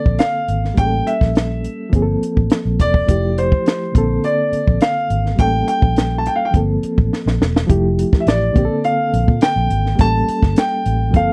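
Lush and warm, this short cut from a longer piece is 1970s-style soul at 104 BPM in a straight 4/4, with rich chords such as Bbmaj9, A7b9, Gm11 and Fmaj9 cycling beneath it. A concert grand piano carries the melody up front, its tone open with long sustain, while a reedy electric piano fills in the accompaniment, lightly overdriven and shimmering with fast tremolo through its built-in speakers. Beneath them, a vintage fingered electric bass sounds round and foam-muted, dark and amped. A compact cocktail drum kit sits close with hi-hat, a punchy kick and a high-tuned snare, its top rolled off for a smooth, small-room feel. A drum fill at 7.1 seconds leads into a new section at 7.7 seconds, all captured in a dry, close studio sound with little reverb.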